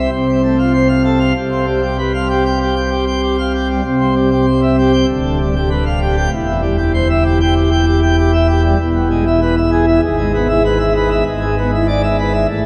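A pipe organ on full plenum plays alone, its mixtures ringing with a brilliant, romantic voicing that sits up front and spans from a deep D1 to G5. This jubilant, majestic classical toccata moves at 97 BPM in a straight 4/4, beginning in C major and shifting to E major at 8.8 s. A wet cathedral reverb with a 6.1-second decay surrounds the sound in this 12.7-second passage cut from a longer piece.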